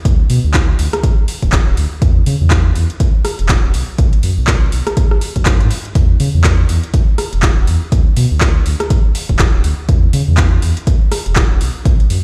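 A punchy, up-front analog kick drives this smooth, deep house groove at 122 BPM in 4/4, swinging its 16ths, alongside a metallic, overdriven drum kit of handclaps, hi-hat and rim click that sits lower in the mix. A full, sustained sub bass with an octave layer blends sine and triangle tones with a fast attack and pumps against the sidechain from D1 to C#3, running nearly the whole 12.2 seconds. The sound is fairly dry yet feels as if played through a big sound system in a bare stone room, and the clip is cut from a longer piece.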